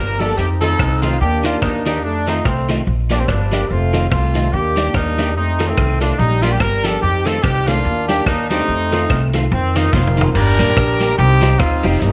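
This joyful, upbeat ska excerpt, cut from a longer piece, moves at 144 BPM in 4/4 with a swung eighth-note feel in F mixolydian. A warm horn section carries the melody up front with light vibrato, while a woody, growly upright bass played pizzicato sits close beneath it. A clean, compressed electric guitar with ensemble chorus and a dark, slightly detuned upright piano adding boxy stabs stay in the background. A vintage drum kit with a punchy kick and dark cymbals drives the groove, and its fill at 9.9 seconds leads into a new section at 10.3 seconds. There the harmony turns from alternating F7, Ebmaj7 and Bb6 chords to Gm and Cm, and a jingly tambourine with tape echo joins at 10.6 seconds. The whole band sits in light reverb and small room ambience.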